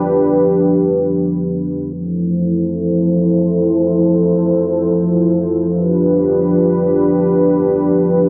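A dark, detuned sawtooth analog pad with a sub octave plays alone and up front in this floating, dreamy hip hop excerpt, its slow attack and sustained, chorused tone sitting in light digital reverb while a filter sweep runs from 1.9 s to the end at 8.3 s.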